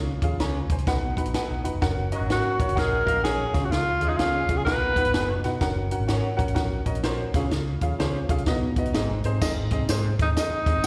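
Heard as a live gig through the venue's PA with recital-hall reverb, this joyful, uplifting, swung 1960s-style soul clip rides on a cocktail drum kit with a punchy kick, dark cymbals and a high-tuned snare, a round, foam-muted electric bass, and a woody, slightly detuned upright piano with slapback echo that plays a fill at 0.9 seconds, while a slightly broken-up electric guitar adds spring-reverbed stabs in the background, a distant horn section carries a second line beneath a breathy tenor saxophone melody with scooped notes from 2.3 seconds, and a jingly tambourine joins at 9.4 seconds.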